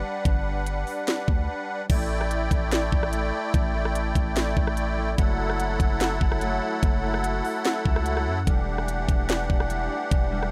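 A dry, gritty recording with transformer saturation opens this hazy, spacious half-time cloud-rap fragment. A reedy, shimmering musette accordion holds up-front chords over a deep, mellow sine 808 bass with tube saturation, and a trap kit punches in with a knocking kick, sharp snare and crisp hats. After a brief break at 1.5 seconds, a bright, fingerpicked concert harp enters at 1.9 seconds with tape-echoed arpeggios ringing in the background as the chords move from Gmaj7 through A7sus4 and F#m7 to Em9.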